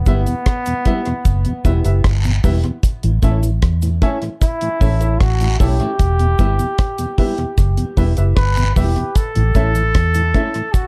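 A bright, distant trombone carries the melody in this meditative, laid-back roots reggae excerpt, sitting roomy and soloistic with dub echo trailing its lines between B3 and B4. Underneath, a vintage muted fingered electric bass sits up front with a round, punchy, foam-muted tone, paired with a deep reggae drum kit whose dry, tight kick, hi-hat and rim click give the 76 BPM straight 4/4 groove its steady footing. A dark upright piano adds woody, slightly detuned stabs with audible action noise and short sustain, bathed in plate reverb, while a mellow tonewheel organ hums in the background through chorus vibrato and a slow rotary speaker. An electric guitar at the edge of break-up, compressed and picked, adds accompaniment further back with its own dub echo, and cabasa and guiro add a faint live-room shimmer. The harmony moves between Em and A in E dorian, and the overall production is dark and lightly reverberant, cut from a longer piece at about 10.9 seconds.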